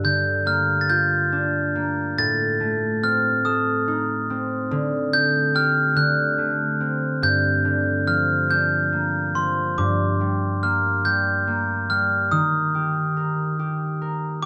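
A bell-like glockenspiel struck with hard plastic mallets carries the melody with a vintage, band-limited ring, while a fingerpicked concert harp supplies acoustic accompaniment in this gentle, dreamy children's lullaby in 6/8, captured by close, detailed microphones with light reverb and moving into a new section at 9.8 seconds within this excerpt from a longer piece.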